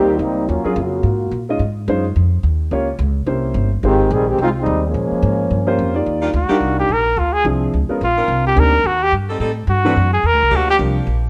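Swinging and joyful, this short jazz passage cut from a longer piece moves at a brisk 215 BPM in 4/4 with a swung eighth-note feel. A woody pizzicato upright bass with steel strings and a warm, open baby grand piano with long sustain drive the accompaniment throughout, both sitting up front. The opening belongs to a trombone section, featured in short phrases with soft attack and light vibrato, over rich harmony such as Ebm11, Dbmaj9 and C7b9. The music settles into Eb major at 6.1 seconds. At 6.2 seconds, a smooth-topped saxophone section enters with tight sustained chords, and at 6.4 seconds a mellow, punchy trumpet takes the up-front melody solo with scooped notes over Ebmaj9, Db7 and D7. A light reverb gives the whole group a touch of space.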